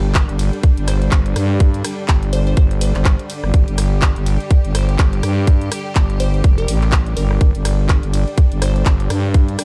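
Bass house, aggressive and gritty with a swung sixteenth feel, built on a tight, up-front electronic kick and a layered, tape-warm garage kit of handclaps, hi-hat, ride cymbal and rim click, while a growling, thick FM bass with tube saturation and sidechain pumping drives beneath a lush, bowed symphonic string section holding sustained chords. A moody ambient pad with a slow attack and long release sits in the background, and a glassy, detuned wavetable pluck with chorus and digital delay carries the melody until 8.8 seconds in this cut from a longer piece.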